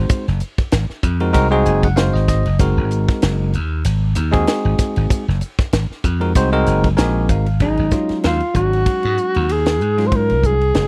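Electric jazz fusion at 96 BPM in Ab mixolydian, slick and soaring, with a bell-like tine electric piano comping over Ab9, adding short fills at 1.4 and 6.7 seconds, while an amped, bright slap bass and a tight funk kit with a high-tuned snare and tight kick drive a 16th-note swing. At 7.6 seconds the harmony moves to Ab7sus4 and a mellow alto saxophone enters for a jazz solo with vibrato, a smooth top and a slapback echo. The sound is dry and close in a 1970s studio style, with every part up front.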